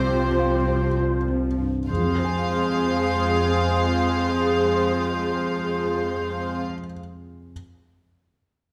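Cinematic film score for orchestra in F minor, a brief, longing and bittersweet excerpt in a rubato 3/4 around 64 BPM that slows through its opening 1.9 seconds as a Csus4 chord resolves to F minor. A warm violin section carries the melody sul tasto with a floating, soft attack, while a very quiet second violin line, airy flutes, a clear oboe and a close-miked clarinet add inner lines and a mellow French horn section holds sustained chords, over dark, woody violas and cellos and double basses in the bass. A felt-muted upright piano with audible action noise sits intimately in the background and rings on alone until 7.5 seconds, all held in a moderate scoring-stage reverb.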